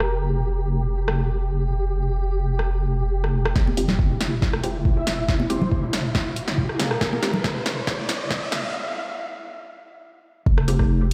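Cavernous and brooding, this half-time deep dubstep cut at 139 BPM in F harmonic minor rides a dark, detuned wobble bass and a punchy, overdriven deep house kit of hi-hat, rim click and snare up front, while a grainy, flickering granular texture hangs over the opening, an overdriven electronic kick arrives at 3.6 seconds with hard-handed congas, a muted phaser-treated dub chord stab and a riser during the build-up, a breathy flute-like lead with vibrato and dub echo drifts in the background, and a break from 8.7 seconds leaves the bass, kit and electronic kick echoing through a stone room.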